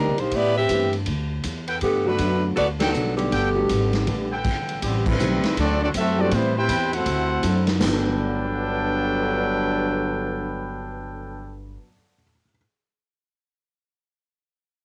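A bright, close-miked saxophone section opens this brassy, swinging big band excerpt in G major, carrying the melody at 160 BPM in 4/4. Trumpets with a smooth top punch in with stabs, then take over the melody at 4.8 seconds, while a dark trombone section with light vibrato sings a second line beneath them. A woody, thumpy upright bass on gut strings anchors the low end, and a drum kit with a boomy kick, medium-tuned snare, ride, hi-hat, splash and crash drives the swing with a natural big-room sound until 7.9 seconds. In the background, a mellow, intimate upright piano with audible action noise and long sustain moves through chords such as Am9, D9 and Gmaj9, ringing on alone until 12.6 seconds. The horns and piano carry a vintage cassette-tape character, and the whole take sits in a short, wet booth ambience like a home recording.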